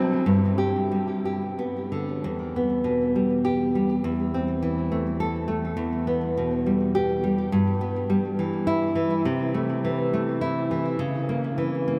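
Nostalgic and warm, this romantic piece for solo classical guitar sits in E minor and moves in a rubato 3/4, drifting between about 87 and 106 BPM. A nylon-string guitar carries everything alone from 0.0 to 12.0 seconds, fingerpicked and full-bodied, with a deep classical character that stays up front, ranging from E2 to A4 and touched with a delay. The harmony opens on G before settling into E minor at 2.2 seconds, where a longer second section begins, then passes through Am/E, Em/G and Am/C. A C#m6 chord at 11.0 seconds adds an unexpected, wistful colour near the close of this short excerpt from a longer work. A huge ambient reverb with a long 9.2-second tail soaks the whole mix, giving it a dreamy, floating atmosphere.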